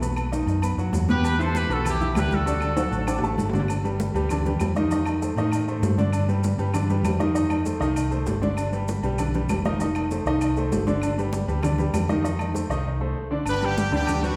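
A clear, open baby grand piano and a dark, round hollow-body electric bass sit up front in a reverberant hall, driving a festive, danceable salsa excerpt in G major at 196 BPM over ringing congas, metal-shell agogo bells and timbales, woody claves and grainy maracas, while a tight vintage trumpet section states a brief vibrato melody from 1.1 to 3.4 seconds that overlaps a drum fill, and a brilliant horn section in octave doubling enters at 13.5 seconds.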